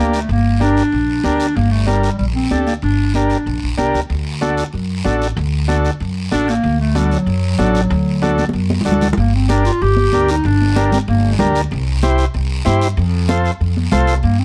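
A straight 4/4 cumbia pulse at 189 BPM drives this fiery, passionate fragment of a longer piece, built on raspy guiro and bright, damped, high-tuned congas played with soft hands in the background, under a growly, woody pizzicato upright bass set up front. A mellow vintage combo organ with light vibrato supplies clean accompaniment, while a close-miked clarinet in classical style carries the solo melody, pausing after 3.7 s. After a drum fill at 8.4 s the music moves into G minor at 9.2 s, passing through Gm, C and F in a dark production with light reverb.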